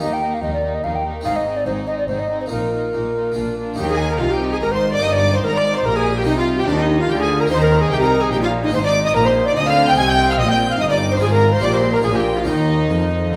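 A wet recital-hall reverb surrounds this lively, festive excerpt from a baroque-style concerto movement in triple time, where an airy, hollow tenor recorder with a woody chiff carries the melody over period-style, gut-string ensembles. One violin section also plays the melody high above it while a second violin section traces its own line; a dark viola section and a brilliant, full Flemish-style harpsichord sit in the background as accompaniment, and cello and rich double bass sections anchor the bass. A brief opening phrase gives way at 3.8 seconds to a longer second section that settles back onto the home chord at 12.5 seconds.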